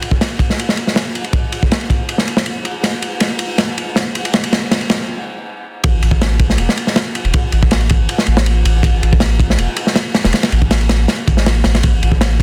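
Raw and frenetic, this drum and bass excerpt with a jungle edge runs at 160 BPM, opening on a crunchy breakbeat kit alone, its saturated, gritty acoustic sound with dark cymbals, a punchy kick and a medium-tuned snare sitting up front in a small room. The build-up peaks in a drum fill from 2.8 to 5.1 seconds and a brief stop, then the drop lands at 5.8 seconds as a soft, round dub sub bass enters, deep and sustained between E1 and A1. Light reverb and a dense, heavily limited modern master keep the sound tight and loud.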